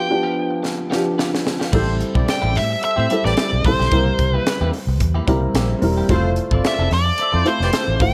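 A nasal, overdriven lead guitar with a parked wah carries the melody up front in this glossy, breezy slice of polished 1980s jazz-funk pop with a light swing, set over dark, boxy baby grand piano chords with analog chorus and a bright, twangy clean guitar riff tucked in the background, while a crisp fusion drum kit with a high-tuned snare, punchy kick and gated reverb enters with a fill at 0.7 seconds, and at 1.7 seconds a round, foam-muted vintage fingered bass and a tight, soft-attack horn section join with a second line, the whole passage sitting in light studio ambience.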